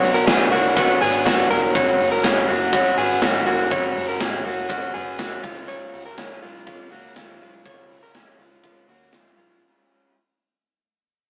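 Youthful and breezy, this short cut from a longer jangly indie pop piece moves at 122 BPM in a straight 4/4, fading out across its whole length as it moves through Bmadd9, F#sus2 and C#. Overdriven, lo-fi picked garage guitar accompaniment and compressed clean electric guitar arpeggios sit up front beside a big rock kit with a punchy kick and medium-tuned snare, while a dark, foam-muted picked bass stays in the background and a very quiet jingly tambourine plays only until 1.6 seconds. The whole mix has the rough, saturated feel of a rehearsal room heard over AM radio, washed in a moderate stone-room reverb.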